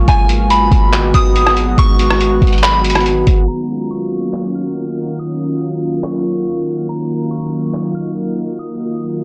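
A glassy FM pad and a deep, boomy 808-style bass open this ethereal, spacious cloud-rap piece in Eb minor, moving at 141 BPM with a half-time 4/4 feel. The pad holds slow-attack, warbling vintage chords through ensemble chorus, built-in reverb and sidechain pumping, while a soft, pure FM bell carries the melody above it with chorus, phaser and tape echo. A lo-fi sampler-style kit sits up front, pitched down and muffled, with a thumpy kick, hi-hat, handclaps and rim click, its snare softly clipped and the kit re-recorded in a large room. The clean sine bass drops away at 3.5 seconds as the harmony shifts from Abm7 to Ebm9 and a filter sweep begins, running until 9.2 seconds. The overall recording is blown-out and overdriven, shaded by a low-pass filter and light reverb.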